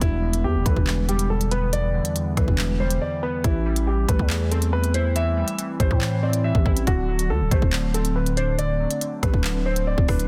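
Drill hip hop in E minor at 140 BPM with a half-time feel, menacing and cold, where a dark, mellow concert grand piano carries the melody through digital delay over glassy, chorused digital keys with a filter sweep, a growling, buzzy 808-style bass and an up-front electronic drum kit of hard-clipped kick, crisp hi-hats, handclaps and rim clicks, with a brief break at 3.0 seconds as the chords move from Em7 to Am7 to D7, all in a dry, dense, heavily limited mix cut from a longer piece.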